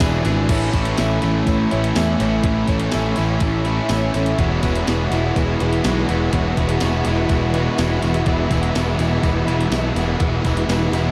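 A blissful, hazy shoegaze and dream pop passage opens with a layered wall of guitars: a bright, double-tracked overdriven riff, a dark semi-hollow guitar with subtle chorus and a compressed clean electric guitar touched with reverse reverb play alongside a boxy, shimmering twelve-string acoustic playing very quiet arpeggios with audible finger squeak. Underneath, a round, fuzz-drenched picked bass sits up front, while a thumpy 12-bit drum machine re-recorded in a large room loses its kick and snare at 0.3 seconds, leaving crash and hi-hat alongside a very quiet, jingly tambourine. The chords move from A to Eadd9 at 4.4 seconds and settle on E at 8.3 seconds, all soaked in a lush hall reverb.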